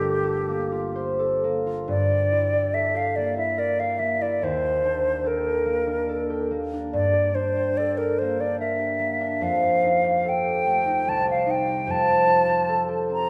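In a rubato 3/4 at 72 BPM with uneven beats, this mysterious, hazy impressionist duo in G minor sets a pure, hollow concert flute melody with tongued notes and vibrato over a fingerpicked concert harp whose ringing acoustic accompaniment reaches down to G1, both parts sitting up front. A brief opening on Gm11 gives way at 1.9 seconds to a longer passage moving through Gm6, Ebmaj7#11, F9 and Cm before settling on Fadd9. The duo is bathed in the wet reverb of a church or concert hall, and the recording is cut from a longer piece.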